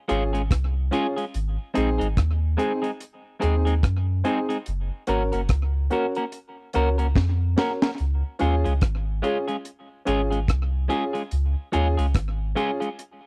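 Roots reggae with a sunny, uplifting mood, this short excerpt from a longer piece moves at an easy swung pace over a Db, Ab, Gb chord cycle, with a deep, round dub sub bass and a dry, high-tuned-snare drum kit sitting up front, the kit adding a fill at 7.2 seconds. A clean, hollow-bodied semi-hollow electric guitar carries the accompaniment through tape echo, while a dark, worn baby grand piano punctuates with mellow stabs of long sustain. The close, 1970s-style studio sound has little reverb.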